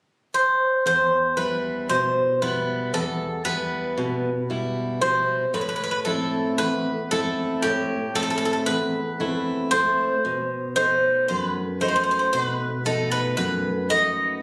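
Greek folk in 9/8 at 115 BPM, reflective and melancholic in E harmonic minor, opens with a bright, metallic bouzouki melody at 0.3 seconds. Its double strings carry some octave doubling. A full-bodied picked steel-string acoustic guitar joins at 0.9 seconds, moving through Em, Am and B7 in a phone recording with a club reverb that cuts off as part of a longer piece.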